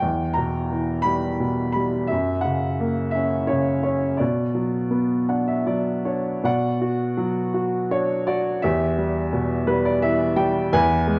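Classical solo piano in a bittersweet, moody vein, this brief cut from a longer piece has a clear, woody, vintage upright piano with long sustain singing a lyrical line from E2 to B5 in B harmonic minor at 78-89 BPM in a rubato 3/4, moving through Em, F# and Bm, adding fills at 4.9 and 9.3 seconds, and sitting up front in a moderate scoring-stage reverb with a dark, warm production.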